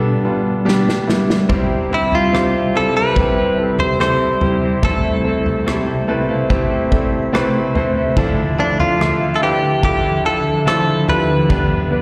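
Pop ballad, tender and heartfelt, cut from a longer piece and heard as a live gig through the venue's PA, where a brilliant, up-front concert grand piano with slapback echo and a cloudy, evolving granular pad open together, a small-room country drum kit enters with a fill at 0.7 seconds, a twangy twelve-string electric guitar adds background arpeggios with echo and delay from 1.5 seconds, and a direct-recorded clean electric guitar carries the melody out front from 1.9 seconds, while the piano breaks into a fill over the Am/C chord from 5.7 to 8.2 seconds.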